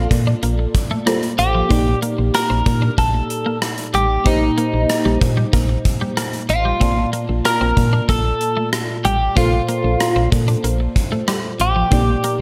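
A bright, clean twelve-string electric guitar carries the melody through delay over a warm, chorused twelve-string riff, a lush, dreamy FM electric piano with a detuned soft pad layer, a punchy, round, dark FM bass and an up-front gated 80s drum kit of tight kick, hi-hat and rim click in a stone room, all gliding through Bbmaj7, Ebmaj7/Bb and Cm7/Bb in this glossy, uplifting 1980s-style pop excerpt cut from a longer piece.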